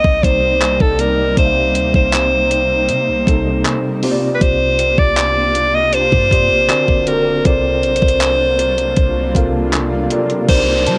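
Contemporary R&B at 79 BPM in C dorian, this moody, longing excerpt from a longer piece sets an edgy, present alto saxophone melody up front over a mellow tine electric piano, a blurred, evolving granular cloud pad with built-in reverb, and a deep, boomy 808-style bass, with the saxophone, piano and pad carrying a cassette tape character. A thumpy, sampler-style 12-bit drum machine of kick drum, hi-hat, handclaps and crash cymbal sits up front, while a delicate, bell-like celesta glints in the background from 0.0 to 0.9 seconds and again from 6.3 seconds. The chords move from Cm9 through Bb69/C and D7b13 to Gm11 in a dry home cassette recording, and an electronic downlifter closes things out at 10.5 seconds.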